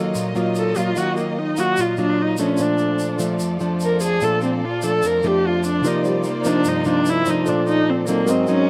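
Sophisticated and sunny, this short bossa nova excerpt, cut from a longer piece, is carried by a dark, expressive solo viola that enters at 0.6 seconds and sits up front, its single bowed voice full of vibrato and sliding portamento. Close beside it, a classical nylon-string guitar is fingerpicked with a warm, acoustic tone, laying down accompaniment. Further back, a barky, clean tine electric piano heard through a combo amp adds its own accompaniment touched with slapback echo, while a lush, distant violin section holds rich, bowed sustained harmonies with its own ensemble vibrato. A grainy, bright tube shaker keeps a soft acoustic pulse beneath it all. The harmony moves from Ebmadd9 to Bbmaj7 and Cm11 before returning to Bbmaj7, and the overall sound is dry and open, like an outdoor take with little reverb.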